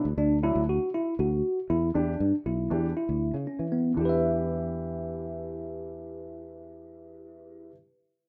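Set in a straight 9/8, this short, tense and brooding progressive instrumental fragment moves from Dadd9 to Em7. A clean tine electric piano, through a combo amp with phaser and plate reverb, plays up-front arpeggios over a warm grand piano accompaniment also bathed in plate reverb. Underneath, a sustaining fretless electric bass sounds growly, punchy and direct, all in a rough home demo mix with a wet small-room ambience.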